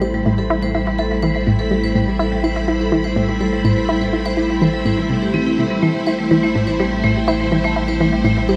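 A straight 4/4 pulse at 124 BPM drives this expansive, mysterious stretch of sequencer-driven space music in A minor, resting on a single Am7 chord for its full 8.6 seconds. A round, nasal analog pluck plays a riff with chorus and delay, while a metallic vibraphone struck with hard mallets rings out delayed arpeggios, and a filter sweep on the synth arpeggio sound runs throughout. A lush, vintage string machine holds up-front sustained chords under ensemble chorus, a deep sine sub bass sits on A1, and a wet hall reverb with a 2.6-second decay gives the piece a spacious glow.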